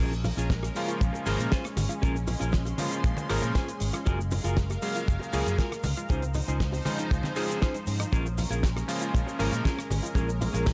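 A sleek, groovy nu-disco excerpt opens on a thick, detuned sawtooth pad, a round analog pluck arpeggio in the background, a twangy clean guitar riff with dub echo, a growly fingered bass up front, a damped 70s kit with a fat snare, and close, dry maracas, bongos and congas. A tight, dry kick joins at 0.5 s, and a cutting, clangy electric grand piano with pumping sidechain enters at 0.8 s, while the guitar slips in a fill at 3.0 s inside a small room.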